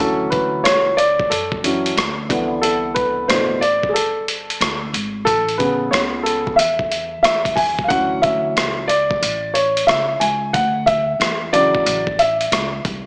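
A mellow, vintage-toned upright piano leads over a woody pizzicato upright bass from the first moment, joined at 0.3 seconds by a gritty, compressed boom bap drum kit with a thumpy kick, hi-hat and rim click, as this cool, relaxed, swung jazz-hop excerpt moves through Dmaj9, Cmaj9 and Amaj9 chords under light reverb and a small-speaker sound.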